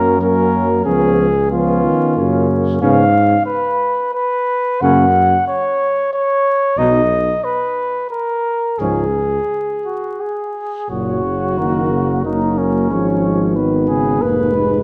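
A solemn, heroic brass quintet in a flexible, rubato triple metre opens with all five players together: a mellow, soft-attacked cornet carries the melody up front while a dark trumpet with light vibrato and a smooth top sings a second line. Beneath them, a close-miked, clear trombone and a French horn fill out the accompaniment, and a distant, roomy bass trombone anchors the harmony. Vinyl crackle and a moderate scoring-stage reverb frame the sound, and the passage moves into a new section at 10.9 seconds before this fragment of a longer piece breaks off at 14.8 seconds.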